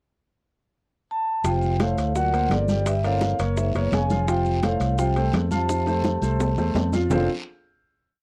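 Soft-mallet vibraphone carries the tune from 1.1 seconds, its metallic, ringing tone kept mellow with the motor off as it states short call phrases. This is a sunny, lively Afro-Cuban jazz piece in a straight four, opening with a brief pickup before the full band arrives at 1.4 seconds. A woody upright piano plays a montuno in octaves with long sustain, while a growly, up-front fingered electric bass, roughened by tube saturation, drives a tumbao that anticipates the chords. A cup-muted trombone adds a veiled, breathy second line, mostly in sixths, with scooped notes and soft attacks. Quiet congas with slaps and open strokes, round low-tuned bongos in steady eighths with hand bell, ringing timbales on shell and bell, a raspy guiro and grainy maracas fill out the percussion, with a drum fill from 5.7 seconds leading to a final chord at 7.1 seconds. The sound is dry and close, in the manner of a 1970s studio.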